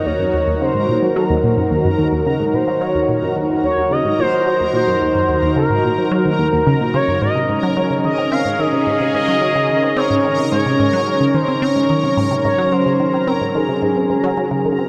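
Bathed in a huge, wet reverb with a long tail, this fragment of expansive, mysterious sequencer-driven space music floats over an Ebm chord that shifts to Absus4 at 7.2 seconds. Up front, a squelchy, ring-modulated blip pluck with a fast attack and phaser plays a low riff through analog delay, while a smooth, mellow sawtooth lead glides between notes with portamento and vibrato, carrying the melody through chorus and delay. Beneath them, a bright, evolving pad with a sub octave and slow filter swell holds sustained chords, and a faint, bubbling texture of random filter steps drifts higher up with chorus and its own reverb.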